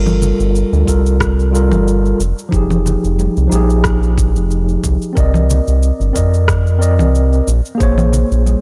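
A round, deep analog bass sits up front in this short excerpt of sunset chillout, its dark sawtooth-and-sine tone colored by ring modulation and transformer saturation, with a fast attack and sustained, evolving notes between F1 and F2. Beside it, a mellow tine electric piano plays the accompaniment cleanly and directly through an analog delay, moving through Gm9, Fm9, Cm9 and Bbm9 chords. The groove runs at 91 BPM in 4/4 with a light 16th-note swing, carried by layered electronic congas, cabasa and rim click that enter at 0.1 seconds, joined by bright, compressed acoustic congas played with soft hands in the background. A knocking, tape-warm electronic kick arrives at 0.9 seconds and stays low in the mix until 7.9 seconds. The sound is dry and gritty, with little reverb, giving the warm, smooth mood a close, hardware-made character.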